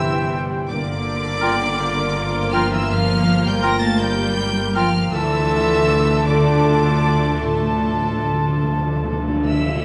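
A dark violin section carries the melody in this bittersweet, longing cinematic excerpt, bowed sul tasto with light vibrato and a soft attack, sounding intimate and smooth at the top. The pulse is a slow, rubato 6/8 at 53 BPM in dotted quarters with uneven beats, and the harmony moves from C to Gm7 before settling on Dm at 5.1 s. Around the melody, an airy, hollow flute, a classical oboe with light vibrato, a distant, roomy clarinet and a floating, pure second violin section in the background each trace their own second line. Beneath them, a rich viola section supplies the accompaniment, a mellow French horn section with a vintage tinge holds sustained chords, a very quiet concert harp rings out fingerpicked arpeggios, and warm cello and double bass sections anchor the bass. Timpani struck with hard mallets on calf heads, articulate and close and dry, enter at 0.7 s and return with a fill from 5.2 s, while a wet scoring stage reverb surrounds the ensemble.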